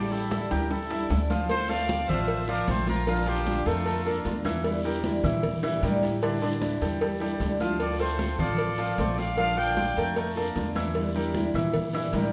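Opening on a drum fill, this danceable Cuban son and guajira excerpt pairs a distant, vibrato-laden trumpet melody with a bright, earthy bowed violin section in the background, both returning at 7.8 seconds, over fingerpicked nylon-string guitar with finger squeak, clear up-front baby grand piano arpeggios with audible action noise, growly woody upright bass, tight hard-handed bongos and cowbell, thin-skinned congas and a raspy guiro, all set in a reverberant recital hall.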